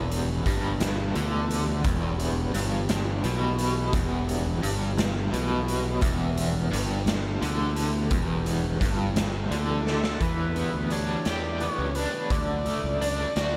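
Psychedelic rock in a slow, mysterious and dark 6/8 at 57 BPM in E minor, where a bright, double-tracked overdriven semi-hollow guitar riff with tremolo and a round fuzz bass drive alongside a gritty, punchy garage drum kit in a pumping stone room, very quiet warbling string-machine cellos and soft, dry congas sit beneath, drum fills land at 1.3 and 9.9 seconds, and a screaming sawtooth synth lead with phaser and delay enters at 9.9 seconds as the chords move from Em to Em7 and Dmaj7, all in a dreamy, reverb-soaked mix cut from a longer piece.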